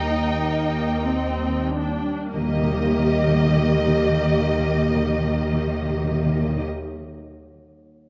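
Classical, a tender and lyrical slow romantic movement for symphony orchestra in Eb major, moving at a rubato 31 BPM in 6/8 and slowing down through its first 2.3 seconds in this short fragment of a longer piece. Dark violin sections carry the melody and a woody, soft-attacked second line, while lush viola and double bass sections sit up front with vibrato, the cellos add a focused, smooth-topped bass in the background, a mellow, thumb-plucked harp rings its arpeggios very quietly, and timpani with plastic heads sound from a small room behind them. The whole is bathed in a scoring-stage reverb and coloured by worn cassette tape with warbly pitch drift.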